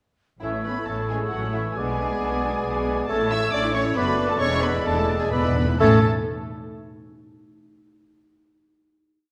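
A dark, woody chamber violin section carries the melody with vibrato in this graceful, spirited classical-period movement for symphony orchestra, played in a quick three with a rubato feel. A rich violin section, mellow clarinet and mellow French horns double the tune at the octave, while a hollow silver flute, warm oboe and bassoon add chords in the rhythm of the tune; the violas rock a two-note figure, and bright cellos and smooth studio double basses hold the bass line. Round, soft-mallet timpani roll in at 4.4 seconds before the closing chord at 5.8 seconds, all set in a wet concert hall reverb.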